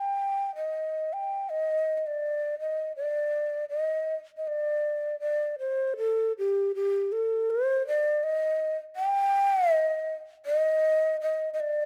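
A breathy shakuhachi carries this short, calm passage of Japanese traditional music entirely on its own, sounding from the first moment to 11.9 seconds. Its end-blown bamboo voice is hollow and mellow, held in a straight tone with soft attacks, and it sits up front in the sound. The line moves freely in a rubato feel over a loose duple metre, staying within the span from G4 to G5. Around 6.0 seconds the phrase turns to a second idea, keeping the same austere, unhurried mood. Close, detailed microphones catch every grain of breath, while a light reverb gives the solo a little space around it as the fragment ends, cut from a longer piece.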